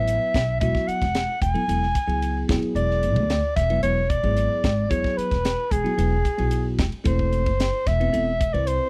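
Electric jazz fusion in a straight 4/4 at 112 BPM, this slick, bright excerpt sits in E mixolydian and runs just under nine seconds, cut from a longer piece. A breathy soprano saxophone carries the melody up front, its dark, whispered subtone, soft attack and light vibrato giving the solo line an intimate, smooth-topped jazz voice between G#4 and G#5. Beneath it, a bell-like tine electric piano plays clean, direct accompaniment through a phaser, while a woody pizzicato upright bass with steel strings anchors the low end from E1 to D2. A tight funk drum kit enters at 0.1 seconds, its high-tuned snare, tight kick, hi-hat and ride cymbal sitting mid-forward in a small room. The harmony moves from F#m9/E to E7 at 2.5 seconds and settles on Amadd9/E at 7.1 seconds, all captured in a dry, close 1970s-style studio sound.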